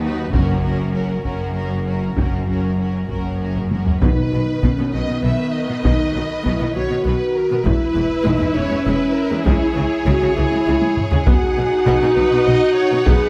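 A moderate scoring-stage reverb gives this cinematic, epic orchestral film cue a sense of space as it opens in B major at 66 beats per minute in a straight 6/8, sounding triumphant and majestic in a passage cut from a longer piece. Dark, punchy French horns hold sustained chords, while a distant, lush violin section carries the melody above a focused second violin line and close, expressive violas that slide with portamento and soft attacks. In the background, clear double basses and smooth, even cellos anchor the low end with bowed vibrato. A taiko ensemble struck with hard sticks enters at 0.3 s, and articulate, dry timpani with hard mallets sound in two brief bursts, first at 0.3 s and again at 4.0 s. The opening build-up closes with a drum fill that lands on the B chord at 4.0 s, and the harmony then moves through E and C#m before another fill returns it to B at 11.3 s.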